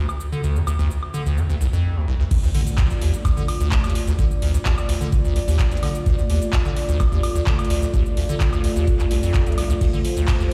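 A dark, detuned sawtooth pad holds sustained D minor chords with sidechain pumping while a squelchy, resonant square-wave acid bass riff sits up front with lush chorus and tape echo, joined at 0.1 s by a booming analog drum machine with metallic hats, handclaps, ride, shaker and woodblock, before the drop at 2.3 s brings in a deep, tape-warm electronic kick and a background impact in this raw, gritty 128 BPM acid house excerpt in D phrygian, bathed in a moderate, lush hall reverb.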